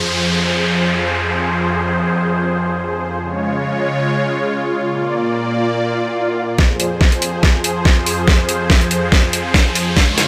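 Lush, detuned supersaw chords open this short cut from a heavy, aggressive wobble dubstep track in F minor at 142 BPM with a half-time, lightly swung feel, the pad sustaining up front through phaser and sidechain pumping over Fm, Db and Bb. A swell from 5.9 s gives way at 6.6 s to a build-up, as an overdriven, knocking electronic kick and a dubstep kit with deep snare and bright hats break into a drum fill, while electronic downlifter, swell and riser effects run throughout. A light digital ambience sits around the parts.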